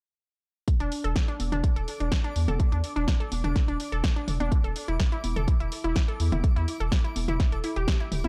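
A straight 4/4 pulse at 125 BPM drives this emotional, driving progressive house excerpt over D5/E and A5/E harmony: an up-front electronic kick and a house kit of punchy snare and bright, pumping hi-hats enter at 0.7 s, a deep, saturated sine sub bass and a glassy, detuned wavetable pluck, chorused, tape-tinged and delayed, pump from 0.8 s as the pluck traces arpeggios, electronic congas and toms re-recorded in a large room add pumping percussion, and a sparkling granular shimmer enters softly with a slow attack in the background from 1.5 s, set in a dark, dry production.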